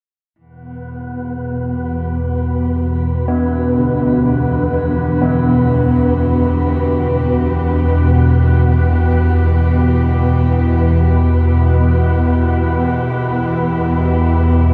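Soaked in a huge, wet reverb that hangs for seconds, this dark ambient drone in E minor drifts in free time, desolate and ominous, resting on a single E minor chord. Up front, an organ-like drone holds a calm, wave-folded unison tone in the low register, thickened by ensemble chorus, with a slow attack, long release and a filter sweep running through it. A chamber cello section fades in from 0.4 seconds with sustained bowed chords, earthy and lightly touched with vibrato, its smooth top glistening in shimmer reverb. Above them, a breathy, wind-like tuned noise layer hovers in shimmer reverb of its own. From 3.3 to 11.0 seconds, old church bells in the background ring out clangorous bronze arpeggios with beating overtones from an iron clapper, repeated by tape echo inside a boxy small room.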